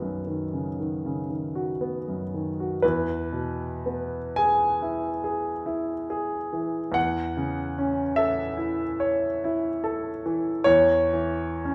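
A rubato pulse in 9/8 carries this brief fragment of a romantic classical nocturne for solo piano, serene and tender in mood. The concert grand sits up front, its sound smooth and vintage with a deep bass, ranging from B1 to B5 inside a reverberant recital hall. The harmony moves from B to E at 2.8 seconds, then through A over E to C-sharp minor over E at 10.7 seconds, holding a steady E in the bass beneath the shifting chords.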